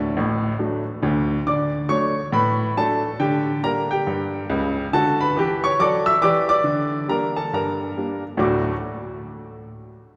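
Swung eighths at 138 BPM in 4/4, with a 62% lilt, drive this exuberant stride-jazz fragment in D major, cut from a longer piece. A solo upright piano carries everything from 0.0 to 8.7 s, ranging from a deep A1 up to a bright E6. Its tone is woody and vintage, yet clear and smooth, and it sits up front in the mix. The harmony rocks between D and Gm/D, settling back on D at 8.4 s. A long church reverb of 3.2 seconds surrounds the playing, recorded in a concert hall or church, so the swinging lines ring out into a spacious, resonant room.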